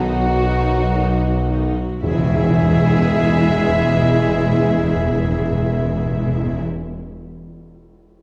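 Adventurous and heroic, this short cinematic cue, cut from a longer film score, moves in a straight 4/4 stride. A lush, distant violin section carries the melody with smooth vibrato, shadowed by a very quiet second violin line and an airy silver flute in the background, while a close, expressive viola section fills in the accompaniment with soft attacks and portamento. Beneath them, a tight, very quiet French horn section and a vintage-toned trombone section hold sustained chords, and a solo trumpet, distant and roomy, punctuates with stabs. The bass rests on a woody cello section and a deep double bass section in the background. At 2.0 s the harmony shifts from B to E with a full band accent, as a close, dry tam-tam and calf-headed timpani on E2 enter, the tam-tam stopping at 4.1 s and the timpani sounding to the end. A generous scoring-stage reverb wraps the whole orchestra in a spacious hall sound.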